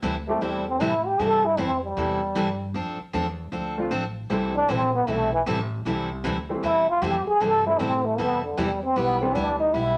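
A bright, full-bodied picked steel-string acoustic guitar and a thumpy, woody pizzicato upright bass on gut strings open this playful, swinging slice of country western swing at 154 BPM in 4/4 with a swung eighth-note feel. At 0.3 seconds a trombone with a plunger mute steps up front to take the solo, its clear wah-wah tone carrying a light vibrato and a soft attack in a jazz style. A mellow upright piano with a dark tone and short sustain adds a brief touch at the start, then returns from 3.8 seconds as extra accompaniment. The harmony rests on C6, moves to F6, returns to C6, and reaches G6 near 9.0 seconds in C major. A moderate studio reverb gives the group a sense of space, with the guitar and muted trombone sitting forward in this excerpt from a longer piece.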